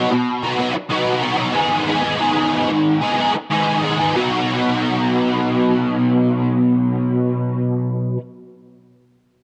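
In a straight 4/4 at 93 BPM, this dreamy, wistful rock excerpt in B major features a lone biting, bright, overdriven electric guitar, picked, double-tracked and placed up front with an ensemble chorus, playing a solo for its full 8.2 seconds over a B to G#m change that returns to B at 4.2 seconds, all set in light digital reverb within a dark production.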